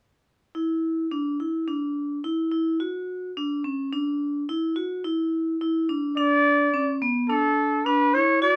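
Moving in a straight 5/4 at 107 BPM, this short cut from a longer progressive instrumental piece feels intricate and tense, tuned slightly low to A4 = 435 Hz. A vibraphone struck with hard mallets, its motor off, opens at 0.5 seconds with up-front arpeggios over an Esus2 chord, its tone metallic, dark and ringing yet smooth. At 6.2 seconds the chord drops away as a growling trumpet enters with a jazz-style solo melody over the continuing vibraphone arpeggios. The trumpet sounds raspy and gritty, with vibrato and scooped notes, mellow at its core yet distant and roomy. A moderate small-room reverb surrounds the pair until the fragment ends at 8.6 seconds.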